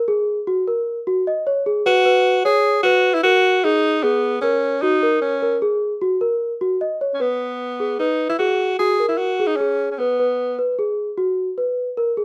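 A clear tenor saxophone carries the melody from 1.9 to 10.6 seconds, its smooth top and light vibrato giving a pop-style solo voice that sits up front, moving between B3 and G#4. Alongside it, a bell-like celesta plays delicate arpeggios from the opening through 12.2 seconds, its close-miked, dry sound full and sweet, struck with medium felt hammers. This is a tense, intricate piece of progressive instrumental music in G# minor, pushing ahead at 151 BPM in an odd 7/4 metre with a straight feel. The harmony moves from D#m7 to G#m7 and on to F#, returning to G#m7 as a second section begins at 7.2 seconds. A moderate studio reverb surrounds the pair, and the passage is cut from a longer piece.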